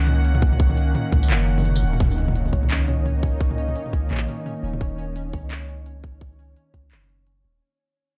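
A deep, sine-toned 808-style bass sits up front from the first second of this heavy, dark half-time drum and bass passage in Eb minor at 171 BPM, cut from a longer piece and opening on a drop beneath a tense, string-like sawtooth drone with vibrato and sidechain pumping. A tight, tape-warm electronic kick joins the layered kit of crisp hats, handclaps, tambourine and toms, all carrying a swung sixteenth-note feel in an echo-heavy mix. At 2.0 seconds a very quiet electronic impact lands as a filter sweep begins on the drone and the passage starts to fade out, while from 2.3 seconds a faint, detuned triangle texture with chorus pulses in time.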